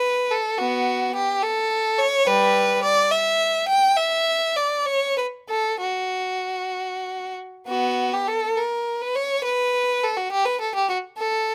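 This is a classical, baroque-style suite movement for unaccompanied violin, heard as a short excerpt cut from a longer piece. The mood is dance-like and radiant, moving in a lilting 6/8 at roughly 62-73 BPM counted in dotted quarters, with a rubato feel that lets the pulse breathe. A single bowed violin carries everything from start to finish, ranging from G3 up to G5 with a clear, focused tone and singing vibrato. The opening phrase returns at 7.7 seconds, so the material is heard twice in quick succession. Captured by close, detailed microphones with little reverb, the violin sits up front and intimate, every nuance of the bow plainly audible.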